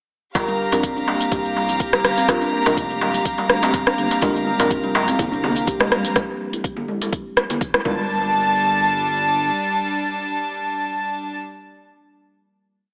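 Afro house with a driving, hypnotic feel, built on a four-on-the-floor electronic kick, smooth programmed hats and rim clicks from a deep house kit, with a crisp, deep darbuka, a grainy, very quiet cabasa and, from 4.2 s, ringing high-tuned congas in the background. A rich, earthy chamber string section holds sustained Gm7 chords up front, joined by soft, wave-folded chord stabs carrying chorus, phaser and tape echo, a woody kalimba step sequence drifting against the bar, and a dark, syncopated sawtooth synth bass, all pumping with sidechain. The whole mix has a lo-fi AM radio tone in a lush hall reverb, with a band accent at 7.7 s before the final hit at 8.1 s.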